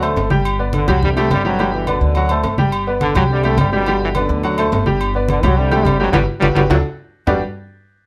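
Sunny and danceable, this short salsa cut moves in a straight four-beat feel. A bright, punchy trombone section carries the melody up front in a low register, tight as a unit with a light vibrato and a smooth top. A clear but worn grand piano with short sustain accompanies, while a woody, thumpy upright bass on gut strings holds the bottom. Low-tuned congas with a thick skin sit close, and ringing metal-shelled agogo bells and timbales add sparkle slightly further back. The harmony circles through G, Gmaj7 and D7, and the full band hits an accent from 6.1 to 7.3 seconds, all captured by close, detailed microphones with light reverb.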